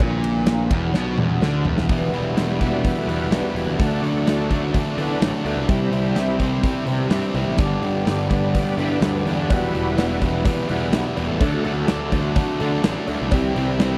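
Brooding and driving, this classic rock passage from a longer piece rides a huge arena drum kit with punchy kick and bright cymbals and a growly fuzz bass, while a raw garage guitar and a sludgy distorted guitar churn out overdriven riffs and a shouting tonewheel organ with slow rotary speaker holds sustained chords in the background. A drum fill at 1.0 seconds leads into the main passage at 1.9 seconds, where a very quiet, shimmering twelve-string acoustic guitar adds boxy, octave-doubled picked accompaniment over a moody progression from Emadd9 through D, C and G. A metallic cowbell sounds quietly at the start and returns at 9.5 seconds.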